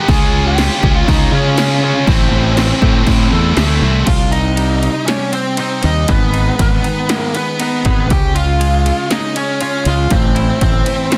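This dark, cathartic alternative rock excerpt at 120 BPM opens with a smooth, overdriven lead guitar melody up front, over two picked distorted guitars, one high-gain and one tight, playing a riff in the background, while a growly fuzz bass and a punchy analog drum machine, put through overdrive and re-recorded in a large room, enter almost at once. At 4.1 seconds the two riff guitars stop and the feel drops to half time as a clean, compressed, twangy twelve-string electric guitar takes up arpeggios over chords moving through Cm, Abm, Db and Am. Light reverb and digital ambience surround the parts, and the master is dense and heavily limited.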